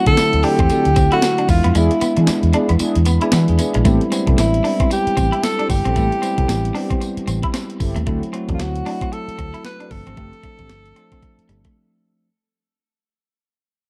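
Bouncy and punchy, this new jack swing R&B excerpt with a swung sixteenth feel sets a breathy, whispered tenor saxophone melody up front over bell-like tine electric piano, a slightly broken-up chorused guitar riff, dark chorused synth brass stabs in the background, a round foam-muted fingered bass and a thumpy, sampler-style drum machine with hi-hat, snare and tambourine, the kick dropping out from 1.8 to 3.9 seconds while the electric piano plays a fill before a fade-out begins at 3.9 seconds and a break arrives at 11.8 seconds, all in a dark production with light reverb.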